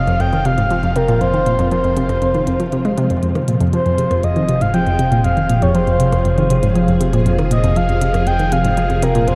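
Drenched in a huge, dark reverb, this excerpt from a longer piece of ambient, sequencer-driven space music unfolds in F minor at 119 BPM in a straight 4/4, with an expansive, hypnotic mood that rests on a single Fm chord. Up front, a hollow, bouncy square-wave pluck, detuned and laced with a noise layer, drives the riff from 0.1 seconds, coloured by chorus, phaser and tape echo. A breathy, flute-like synth lead carries the melody between Bb4 and G5 with soft vibrato, chorus and tape echo. Beneath it, a swirling, warbling vintage string machine fades in with sustained sawtooth chords under ensemble chorus and phaser, while a round triangle-and-sine analog bass holds a deep F1. Clicky, overdriven electronic hi-hats and percussion blips also fade in, trailed by tape echo. From 1.0 seconds, a very quiet, resonant stepped-filter texture bubbles high on F5.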